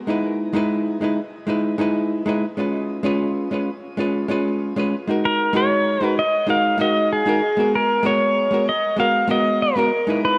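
This recording has a dark, warm production set in a moderate concert hall, with reverb lingering for about 2.2 seconds. The piece is a sunny, relaxed chillout fragment cut from a longer work, tuned slightly sharp to A4 = 445 Hz and moving in a straight 4/4 feel. A clean, picked hollow-body jazz guitar sits up front from 0.1 seconds with a shadowy electric tone, carrying the accompaniment through Emaj7, C#7, F#69 and G#m9, wrapped in shimmer reverb and delay. At 5.3 seconds a pedal steel guitar enters with the melody; it is bright and twangy, played with fingerpicks, compressed, and shaped by volume swells and slide, with its own shimmer reverb and tape echo. Both guitars carry on together until the fragment closes at 10.4 seconds.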